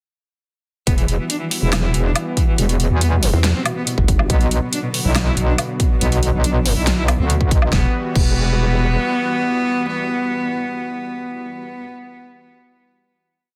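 A half-time 140 BPM groove in 4/4 drives this aggressive, chaotic heavy wobble dubstep piece in E minor. A punchy, up-front electronic kick and a kit with a huge snare, metallic hats, crash and woodblock back a saturated FM wobble bass with changing wobble speed, joined briefly at 3.3 s by a nasal, formant-filtered wobble bass answering it. Beneath them a lush, detuned supersaw pad pumps, while an intimate sul tasto cello with light vibrato and delay plays a repeating sixteenth-note riff over a pedal note, carrying on with the pad after the drop gives way at 7.7 s to a final Emadd9 chord.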